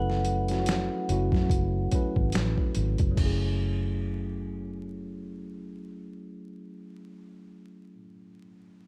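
Gritty, overdriven boom bap drums with a thumpy kick, finger snaps, hi-hat and crash drop out at 3.4 s in this smooth, sultry 72 BPM neo-soul R&B excerpt in F# minor, where a round, foam-muted fingered electric bass and a mellow tine electric piano sit up front on an F#m9 chord, a ringing hard-mallet vibraphone with slow motor vibrato sings a brief melody until 2.3 s, and the dry mix carries a bed of vinyl crackle.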